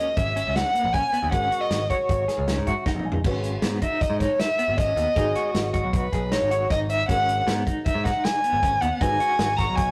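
A rough rehearsal-room recording with tube saturation and a stone-room reverb frames this driving, intricate progressive instrumental excerpt in 5/4, where a woody, bowed violin carries the melody up front and takes a solo from 3.2 s, over a boxy baby grand piano in the background with a short fill, clean electric guitar arpeggios with tremolo, a bright picked electric bass, a tight, roomy soul drum kit that fills into the solo, and a brief scooped, jazz-style trombone line at 5.2 s.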